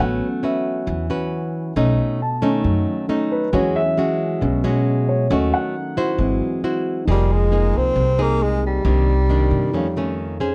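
A breathy, subtone tenor saxophone enters at 7.1 seconds with scooped notes and light vibrato over an intimate, smooth bossa nova groove, where a dark grand piano takes a solo turn before it, a fingerpicked nylon-string guitar adds classical-style accompaniment, and a woody pizzicato upright bass anchors the low end, all in a light-reverb mix with a warm, dusky production.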